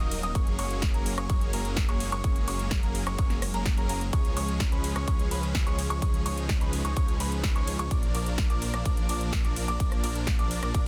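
A powerful, euphoric festival progressive house cut at 127 BPM opens with a faint, airy detuned pad, clear but slightly boxy grand piano arpeggios in a high register, huge supersaw chord riffs, a thick, menacing saturated saw bass and a layered big-room kit of snare, rim click, ride and metallic hi-hats. The piano, supersaws and bass all pump with sidechain, and the piano and supersaws trail delay. A punchy, up-front electronic kick joins at 0.4 seconds. The harmony moves from Gbadd9 to Db to Bb inside a dense, heavily limited modern master with digital ambience.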